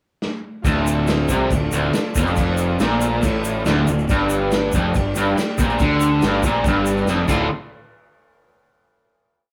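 A vintage drum kit opens with a short fill at 0.2 seconds, its muffled, dark-cymbal stomp setting up a menacing, raw garage rock piece in a straight 4/4. At 0.6 seconds a growly fuzz bass driving in eighth notes enters with a reedy combo organ holding clean triads with light vibrato in the background. At 0.7 seconds a bright, overdriven guitar joins with an up-front, double-tracked single-note riff that the bass doubles, alongside a grainy egg shaker keeping time. The chords move from Dm to G5 at 4.1 seconds and back before another drum fill leads into a final hit at 7.5 seconds, all captured as a band playing live in one room with light reverb.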